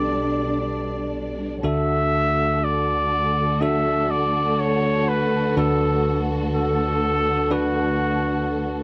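Hopeful and emotional, this slow pop ballad in D major moves at 61 BPM in a straight 4/4, with a breathy, mellow trumpet carrying the melody in a jazz style marked by light vibrato and scooped notes. A bell-like, bright tine electric piano supplies the accompaniment, while a dark, lush bowed string section holds sustained chords with expressive vibrato and a smooth top. The sound is dry and close, like a 1970s studio recording, with all three parts up front through this short cut from a longer piece, shifting from G/B to D at 1.6 seconds.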